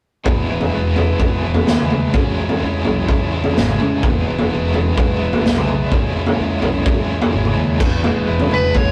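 A reedy pedal harmonium holds sustained chords in the background while an overdriven, double-tracked garage guitar tremolo riff kicks off this trippy, kaleidoscopic psychedelic rock excerpt at 127 BPM in E major, moving between E and C#m. A round fingered bass sits low in the mix beneath an up-front, gritty acoustic drum kit with a punchy kick, dark cymbals and a pumping small-room sound, all caught in a rough rehearsal-room recording with light reverb and saturation. At 8.5 s, shortly after the passage shifts into a new section, a compressed fuzz lead guitar cuts in with a brief melody.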